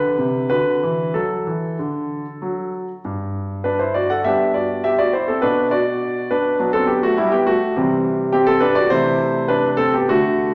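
A grand piano carries this classical-period sonatina alone, its warm, smooth tone with a vintage character placed up front in the mix. The music moves in G major and 4/4 at roughly 93-105 BPM, with a rubato feel that gives the dramatic yet elegant mood room to breathe. Tuned to A4 = 439 Hz, the piano spans from G2 up to F#5. An opening passage settles through Cmaj7sus2 and D before a new section begins at 3.0 seconds on G, then moves through Bm and C to close on Am/C. A wet recital hall reverb with a 1.6-second decay surrounds the instrument in this fragment cut from a longer piece.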